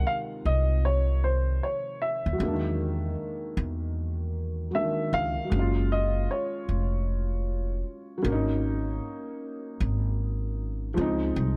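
A dreamy, cosy lo-fi hip hop fragment begins with a dark, vintage-toned upright piano singing a smooth, filtered melody. Beneath it sit a felt-muted upright piano, whose boxy, intimate chords carry audible action noise and a cassette-tape haze, and a woody, thumpy pizzicato upright bass on gut strings, all up front in a small room ambience with a swung sixteenth-note feel. The lush extended harmony moves from Dbmaj9 through Emaj9#11, and the melody stops at 10.9 seconds while the muted piano and bass carry on to 11.6 seconds.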